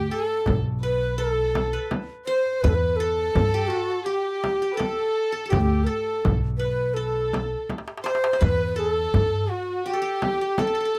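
Turkish makam ensemble music in a hypnotic, longing mood, this dry, close 1970s-style studio excerpt puts a breathy, end-blown ney with vibrato up front on the melody, joined on a second line by a bright-edged, fingerpicked qanun and a sul tasto chamber violin section with soft attack, over a woody, thumpy pizzicato upright bass that drops out at 9.5 seconds, a deep, saturated frame drum up front and a crisp metal-shell darbuka in the background, with a drum fill from 7.7 to 8.4 seconds.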